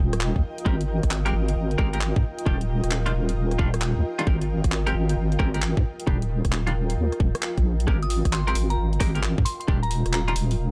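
UK garage in a two-step shuffle at 133 BPM, this sunny, bouncy excerpt in Ab major rides a deep, wobbling square-and-sine bass with chorus that sits up front beside a tight, overdriven electronic kick, while a garage kit of handclaps, hi-hat and rim click adds warm hats under studio reverb. A blurred, evolving granular pad drifts through the whole passage with sidechain pumping, and a twangy clean electric guitar cuts in with bright stabs from 0.7 s, drenched in lush chorus and tape echo over chords moving between Ebadd9, Abmaj9 and Ebmaj9. At 8.0 s a pure, mellow FM bell melody enters high up, coloured by chorus, phaser and tape echo, all set in a dark digital ambience.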